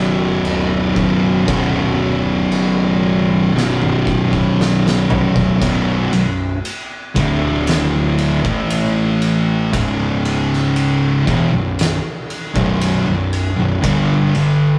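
A slow, straight 4/4 pulse drags this sludgy, brooding stretch of stoner and doom metal, cut from a longer piece and played with a rough rehearsal-room feel. Two thick fuzz guitars carry the riff up front from the first second, one with a warm distorted tone and the other darker, both picked and heavy with fuzz. Beneath them a fingered electric bass sits in the background, its overdriven fuzz bright and growly. An oversized, low-tuned acoustic kit comes in at 0.4 seconds with a boomy kick, fat snare, dark crash and ride cymbals and toms, all saturated and gritty in a pumping stone room. A drum fill from 3.5 seconds leads into a new section at 5.6 seconds, where the riff moves from B minor through power chords on B, D, A, C#, B and finally G, all under a moderate reverb.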